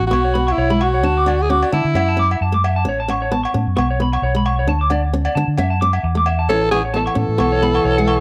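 Heard through moderate studio reverb, this sunny highlife guitar band excerpt at 132 BPM sets a raspy, growling alto saxophone up front over fingerpicked flamenco guitar with finger squeak, a round, punchy fingered electric bass, twangy, slightly broken-up electric guitar arpeggios through analog delay, and ringing agogo bells, while the sax drops out at 2.6 seconds and returns at 6.5 seconds alongside a dark, close-miked trombone holding a second line over chords cycling from Bsus2 through D5, F#m7 and A.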